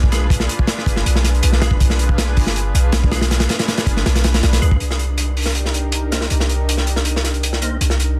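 A deep, boomy 808-style bass with tube saturation sits up front in this dark, atmospheric drum and bass excerpt, beside a crunchy, gritty breakbeat kit with a tight kick and a medium-tuned snare, its top rolled off in a small room. A lush, detuned sawtooth unison pad holds sustained chords roughened by vintage 12-bit sampler grit, while a round, percussive tonewheel organ plays stabs in the background through fast rotary speaker, chorus vibrato and dub echo. The opening drop runs over a G7b9 chord until 4.8 seconds, when the harmony moves to Cm7 and a filter sweep works on the organ through to the end in a dense, heavily limited master.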